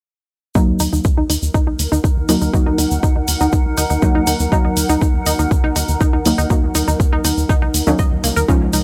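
A punchy, layered electronic kick sits up front in this melancholic, hypnotic slice of melodic techno, cut from a longer piece and moving at 121 BPM in a straight 4/4 around Eb minor. Beneath it, a tight, dark sequencer bass built from sawtooth, square and triangle waves drives the groove with tube saturation and sidechain pumping. An analog pluck plays detuned, round arpeggios over a noise layer, and a brassy synth stab adds short hits; both carry chorus, tape echo and sidechain pumping, and each moves through a filter sweep. A grainy egg shaker and an electronic hi-hat, re-recorded in a large room, fill out the percussion, with the hi-hat entering at 0.8 seconds. From 1.5 seconds, a mellow granular cloud pad drifts in, blurred and evolving under its own reverb and sidechain pumping, all within a dry, gritty hardware sound and a digital ambience.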